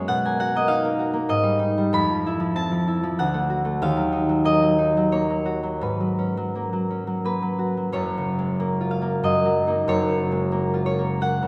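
Dreamy and graceful, this short classical excerpt for solo concert harp moves in a rubato 3/4 at around 83-100 BPM in F# major, its bright, ringing fingerpicked tones sitting up front across a range from F#1 to B5. Lush chords such as Bmaj7, D#madd9 and G#m11 drift through the opening before the music settles onto F#maj9 at 7.9 seconds. A wet scoring-stage reverb places the listener further back in the room, giving the harp a spacious halo that carries through to 11.5 seconds.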